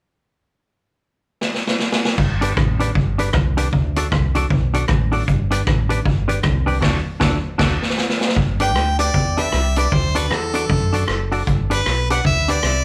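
A clear, present harmonica takes the solo spotlight near the end, entering at 8.6 seconds with a jazz-styled line full of vibrato and scooped notes, trailed by dub echo. Beneath it, this bouncy, upbeat ska excerpt moves at 155 BPM in 4/4 with a swung eighth-note feel in G major, cycling between G and D chords. The street-band drum kit opens with a fill at 1.4 seconds, its boomy kick, medium-tuned snare, rim click, hi-hat and crash sitting up front with a rolled-off top and a small-room character. A fingered electric bass, dark, round and punchy, joins the drums, and a semi-hollow electric guitar adds clean, compressed, hollow-body accompaniment. A second drum fill and a band accent lead into the final section, where the harmonica solos over the full band as it plays together in one room under light reverb.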